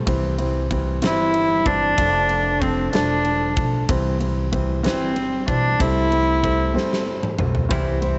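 A swaying 6/8 pulse at 63 BPM carries this romantic C major pop-ballad excerpt, where a woody pizzicato upright bass and a mellow, felt-muted upright piano support a reedy, bowed cello melody entering at 1.0 seconds, while a huge arena drum kit with a fat snare and bright cymbals plays a fill at 6.8 seconds before a clean, bright electric guitar with analog chorus and slapback echo arrives with arpeggios at 7.7 seconds, all in a softly reverberant studio space.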